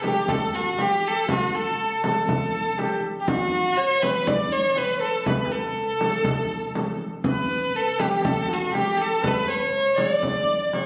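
A rich, focused violin carries the melody up front with vibrato and a smooth top, while a soft-attacked, close-miked soprano saxophone plays a second line in classical style and a deep, large frame drum keeps the percussion in this festive, stately Arabic maqam ensemble passage, heard through the wet reverb of a recital hall as captured on a phone in the room.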